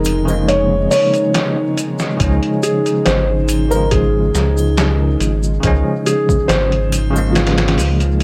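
A lightly reverberant, echo-heavy mix carries this melancholic, smoky trip hop excerpt at 70 BPM in 4/4, moving from Bbm7 to Db, as a felt-muted upright piano with audible action noise sings the melody through tape echo over a bell-like tine electric piano with tremolo, a round analog bass up front, a dark chorused pad with 12-bit sampler grit in the background, a faint nasal bowed-like drone, close tube shaker and triangle, and a pitched-down, overdriven sampler-style drum kit with a thumpy kick that enters at 0.1 s.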